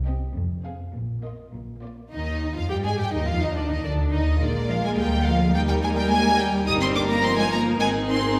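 In a straight, quick 2/4, this lively, graceful classical-period movement for string orchestra is cut from a longer piece. The symphonic violins carry the melody up front in a high register, bowed sul tasto with a soft attack and a pure, floating tone. A more distant second violin section sits in the background with a second line of its own, rich and softly attacked. Violas fill the accompaniment with a dark, woody, lush sound and vibrato. Beneath them, distant cellos and an up-front double bass section share the bass, all bowed sul tasto. A church or concert hall lends a reverberant glow as the harmony moves from Fm and Bbsus4 to Eb at 2.1 seconds, passing through Dm and Bb7 before settling on Ab near the close.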